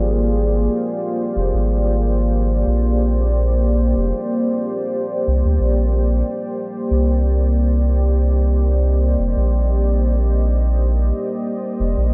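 Ambient dub with a spacious, hazy mood, this short excerpt sits in a light swing and floats through about 12.1 seconds of sustained sound. A deep, moody ambient pad holds long chords throughout, its detuned sawtooth unison and sub octave softened by chorus, slow attack and long release. Beneath it, a round analog bass with a sine-like, dark tone and quick attack carries the low end and sits up front. The harmony moves from Bb13 to Cmadd9 at 5.6 seconds, and both parts play from start to finish. A huge ambient reverb with a long tail soaks the dreamy mix.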